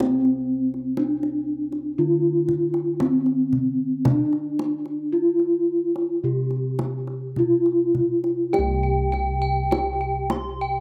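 Javanese gamelan in a serene, shimmering mood, heard as a short section cut from a longer piece in a straight four-beat metre. A bronze metallophone carries the melody from the start, struck with padded disc mallets for a mellow, soft ring, its paired tuning producing gentle beating that sits up front with a boxy small-room character. Beneath it, bossed gongs supply the bass with a round, full, close-miked tone, while the kendang adds tight, acoustic drumming played with soft hands. At 8.5 seconds a second bronze metallophone enters in a higher register with arpeggios, its horn mallet giving a bright, airy edge and a slapback echo. The recording was made outdoors and sounds dry, with little reverb.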